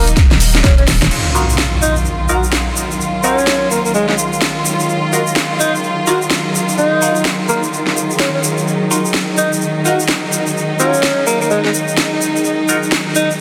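A breathy, distant alto saxophone with tape echo opens this swaggering, gritty bass house excerpt together with a rich bowed string section pumping against the sidechain and a hollow, knocking FM bass. That bass drops out at 1.1 seconds after a filter sweep and a brief drum fill from a punchy kick and a compressed, sampler-style soul kit. An electronic impact lands at 1.1 seconds as the overdriven house kit, with its cracking snare and bright hats, carries on alongside a grainy shaker, while a nasal, band-passed sawtooth chord stab with phaser, chorus and a filter sweep sits in the background; from 2.2 seconds a dark, warbling lo-fi pad fills in behind, and the mix is bathed in a lush hall reverb and a dense, heavily limited master.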